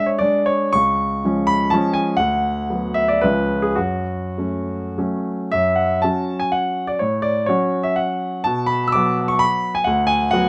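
A warm grand piano plays alone in this short classical cut from a longer piece, a romantic triple-time dance in F# minor with dotted rhythms and a capricious, wistful mood. The tempo moves with rubato between 94 and 136 BPM, and the piano ranges from C#2 to E6 with a present, polished tone and long sustain, placed up front by close, detailed microphones and light reverb. A fresh section begins at 5.5 seconds, and the harmony moves through C#7 and F#m before settling toward Bm/D at 9.9 seconds.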